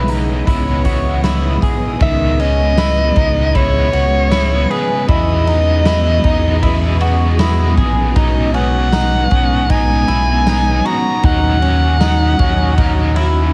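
Through a heavily compressed, radio-like sound in a small room, this haunting, melancholic dream pop excerpt sets a smooth soprano saxophone melody with vibrato and tape echo over twangy, slightly broken-up electric guitar arpeggios, a bright, overdriven, double-tracked garage guitar with harmonic tremolo and lush chorus, vintage string machine chords with ensemble chorus, a round, up-front analog bass, and a gritty, saturated garage drum kit with punchy kick, snare, hi-hat, ride and tambourine.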